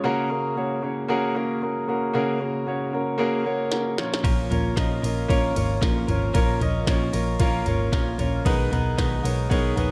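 Piano-driven pop with an uplifting, hopeful mood at 114 BPM and a light swing, opening on a dark, mellow baby grand piano alone before a minimal electronic drum kit with a soft kick and tiny snare enters with a fill at 3.7 seconds, joined at 4.2 seconds by a clean, compressed direct-recorded electric guitar riff and a round, foam-muted picked bass, all set in light digital reverb as the chords move from F#add9 through A#m to G#madd9 in this short excerpt.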